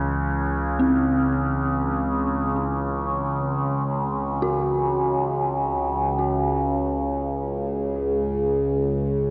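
A nasal, up-front drone with moving overtones and chorus anchors this dark, desolate dark ambient drone passage, which flows in free time around a C# minor chord. A very quiet quartz singing bowl rings with slow beating throughout, an eerie, inharmonic synth bell with chorus and analog delay plays arpeggios from 0.8 s, and a deep, moody pad adds very quiet sustained chords from 7.9 s. The whole dreamy mix is soaked in cathedral reverb, and the passage is cut from a longer piece.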